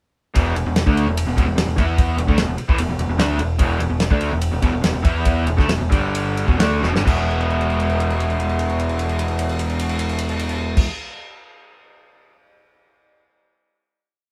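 This short, complete classic rock piece sounds like a band playing live in one room, with light reverb around a gritty, driving performance in straight 4/4. Two overdriven electric guitars carry the power-chord riff together: one crunchy and bright, the other raw, lo-fi and up front with a garage edge. A growling picked electric bass, direct and amped with its own overdrive, doubles that riff in punchy, driving eighth notes. The damped 70s acoustic kit also sits up front, dry and dark-cymbaled, with a fat snare, a tight kick and a rolled-off top laying down a big rock groove. The band starts slowing down at 3.6 seconds, a drum fill leads into a held final E chord at 7.1 seconds, and more fills roll on under that chord before the drums carry on alone until 12.3 seconds.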